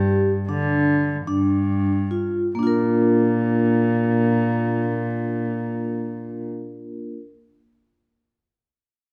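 A moderate recital-hall reverb surrounds this short cut from a longer contemporary instrumental piece in Bb major, played in free time with a restless yet hopeful mood. A vibraphone struck with medium mallets sits up front, spinning arpeggios in a metallic, ringing tone coloured by a slow motor vibrato. Beneath it, a single bowed cello carries the bass line with a nasal, reedy gut-string sound in period style. The opening stretch slows down over a G5 chord before the harmony settles onto Bb at 2.6 seconds, where a new section begins. The cello drops away at 6.4 seconds, leaving the vibraphone to ring on alone until 7.2 seconds.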